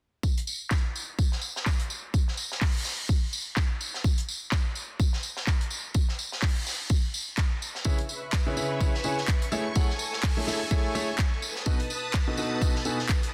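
A clear, intimate grand piano riff with audible action noise and tape echo pumps in at 7.9 seconds over C#m7, Amaj7 and B7, arriving together with shimmering vintage string-machine violins in ensemble chorus, atop a punchy up-front electronic kick, layered handclaps and a gritty, saturated breakbeat kit with a high-tuned snare and tambourine, giving this soulful, bittersweet piano house cut a swung 126 BPM groove and a dense, heavily limited sheen.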